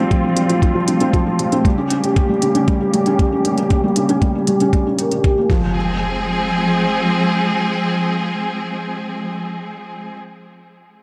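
A felt-muted upright piano, soft and intimate with thick felt, audible action noise and digital delay, carries the riff in this cinematic, moving piano-and-strings electronica excerpt. A lush, bowed studio string section with vibrato and a smooth top holds sustained chords under sidechain pumping, a low-pass filter and a filter sweep through the first 5.8 seconds. A muffled, thumpy sampler-style kick sits up front until about 5.6 seconds, beside crisp electronic hi-hats that drop out around 5.3 seconds, and an electronic impact arrives at 5.5 seconds as the harmony moves from Fsus2 and Gdim to Fm under light reverb.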